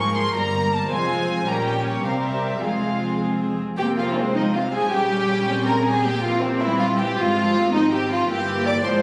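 Up front, a violin section plays a soft-attack second line beneath a floating, pure violin melody in this stormy, restless classical-period string orchestra movement in 6/8, while an intimate viola section with vibrato supplies accompaniment and woody cellos and dark double basses share the bass, every section bowed sul tasto, all caught on a phone in the room with wet concert-hall reverb and compression.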